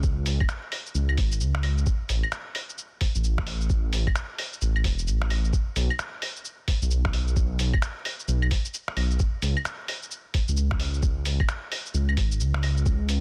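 A deep, rumbling detuned saw bass drives this rainy, nocturnal future garage excerpt at 131 BPM in C# minor, sitting up front and pumping against a muffled, thumpy kick that is pitched down and tape-warm. Beneath them, a lo-fi sampler-style kit of claves, finger snaps, hi-hat and shaker sits lower in the mix, swung on the sixteenths, with a soft-clipped snare. The sound is dry and close, wrapped in vinyl crackle and a dense, heavily limited modern master.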